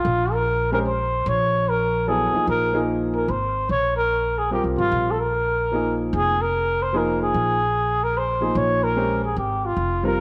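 A breathy, dark trumpet with vibrato and scooped notes carries a spiritual, searching modal jazz melody in a swinging three, up front over woody pizzicato upright bass, as a natural-sounding grand piano joins at 0.7 seconds, all set in an echo-chamber reverb with small-room ambience over a single suspended chord in this excerpt.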